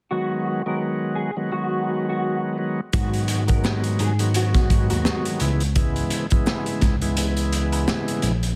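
Boom-bap hip-hop at 85 BPM in G# minor with a swung, dark and moody feel, opening on a reedy, bright tonewheel organ through a slow rotary speaker and a clean, fingered electric guitar melody with ensemble chorus, moving from G#m7 to C#m7 at 5.4 seconds. At 2.9 seconds a saturated, gritty breakbeat kit with a tight kick and high-tuned snare enters up front, alongside a tine electric piano playing the bass line through its built-in speakers and very quiet maracas, woodblock and group handclaps. The guitar drops out at 5.2 seconds, leaving the organ, drums, bass and quiet percussion in a dense, heavily limited master with studio reverb, cut from a longer piece.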